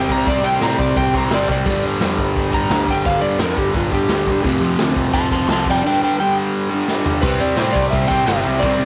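A straight 4/4 pulse at 172 BPM drives this raw, swaggering garage rock excerpt, with a gritty, saturated drum kit of punchy kick, medium-tuned snare, hi-hat, ride, crash and toms pumping in a bright stone room. Up front, a double-tracked fuzz guitar grinds out a compressed, distorted riff over chords moving from C5 to G5, then F and G before arriving on C. A dark, slightly broken-up slide guitar carries a fingered solo through the first 7.2 seconds, and a drum fill leads into the closing section. Beneath them, an overdriven picked bass growls from the background, while a close, very quiet tambourine jingles from 1.8 to 5.7 seconds. Light studio reverb gives the whole band a rough, live-sounding room.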